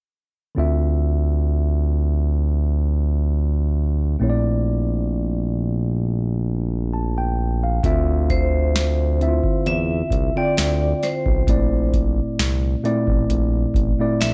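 Smooth and soulful, this slow neo-soul and R&B piece at 66 BPM in D minor opens with a worn, slightly out-of-tune tine electric piano and a saturated sawtooth synth bass circling Dm9 and Bbmaj9#11, before a booming analog drum machine with deep kick, crisp snare and metallic hats arrives at 7.8 seconds and a ringing vibraphone with fast motor vibrato and slapback echo takes the melody from 8.3 seconds, set in a lightly reverberant room.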